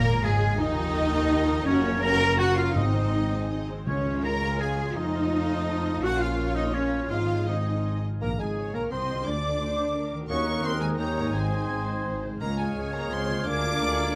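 In a rubato 3/4 at 160-177 BPM, this spirited, graceful classical passage in Db major sets a lush, vibrato-rich violin section on the melody over clarinet, hollow flutes, a distant oboe and background second violins, with expressive violas, very quiet French horns holding chords, ringing harp arpeggios, and bowed double basses and cellos on the bass, while close, dry timpani touch in at 2.8 s and 12.4 s, and a bassoon, a dark trumpet section playing stabs and a roomy tuba join at 8.2 s, all in a moderate recital hall reverb.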